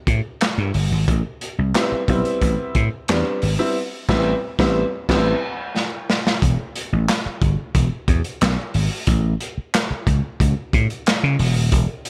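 A growly, punchy vintage slap bass drives this hypnotic, driving 90 BPM funk excerpt in 4/4 over a gritty, saturated breakbeat drum kit of tight kick drum, medium-tuned snare drum, hi-hat, dark crash cymbal and handclaps, while a brilliant, worn, slightly detuned upright piano adds woody stabs from 1.8 to 5.4 seconds, with band accents from 3.8 seconds and a drum fill from 5.8 seconds, as the harmony moves from Am9 to Em and then A in a studio reverb.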